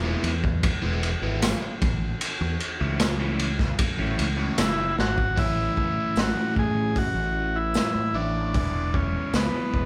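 A crunchy breakbeat drum kit sits up front in this hypnotic, trippy psychedelic rock excerpt, its saturated, muffled, lo-fi sound pairing a tight kick and medium-tuned snare with dark cymbals across hi-hat and ride. The 76 BPM groove in straight 4/4 rests on a round, punchy fingered electric bass and a dark, overdriven electric guitar riff, double-tracked and compressed, with a phaser on it. The chords move from E to A and back to E. A jingly tambourine sits in the background from 1.4 s, and a buzzy vintage combo organ, clean and close, carries the melody from 4.6 s, just before a drum fill at 5.0 s leads into a new section. The band plays live in one room, wrapped in a moderate large studio reverb.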